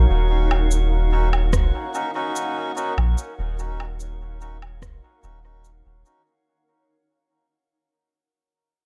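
A straight 4/4 pulse at 73 BPM carries this short ambient dub fragment in Eb minor, resting on an Ebm7 chord, with tape-hued electronic woodblock, shaker and rim click trailing dub echo and a layered electronic kick joining between 1.5 and 5.0 seconds. A round, soft sub bass sits up front beneath a cloudy, granular pad of blurred sustained chords and a glassy texture of drifting overtones with chorus, while a reedy, breathy melodica throws nasal stabs into dub echo. The mood is deep and spacious, the recording is mostly dry, and the whole fragment fades out across its 6.5 seconds.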